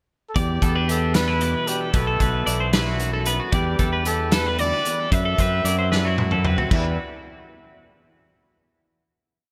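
A big, arena-sized sound bathed in lush hall reverb frames this short, wistful and intricate piece of math rock and midwest emo in E minor, moving in 6/8 at 76 BPM through Em7, B7sus4 and F#m7b5 before settling on a final Em7 chord. A warm trumpet with light vibrato sings a free, pop-style solo melody through slapback echo and analog delay, while a bright twelve-string electric guitar picks an ostinato of arpeggios and a twangy, compressed electric guitar adds syncopated fingerstyle accompaniment. Underneath, a growling, overdriven fingered bass sits tight with the punchy kick of a loose indie drum kit, whose dark cymbals and pumping room sound close out the section with a fill from 5.9 to 6.7 seconds.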